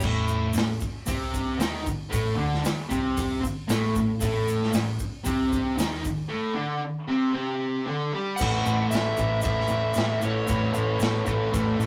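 A straight 4/4 beat at 115 BPM drives this raw, swaggering garage rock piece, with punchy, gritty drums and dark cymbals up front beside a double-tracked, bright fuzz guitar riff, while a round hollow-body bass and a grainy egg shaker fill out the wet, small rehearsal-room sound; after an A diminished opening, the harmony lands on A at 8.4 seconds as a dark, overdriven slide guitar takes the melody.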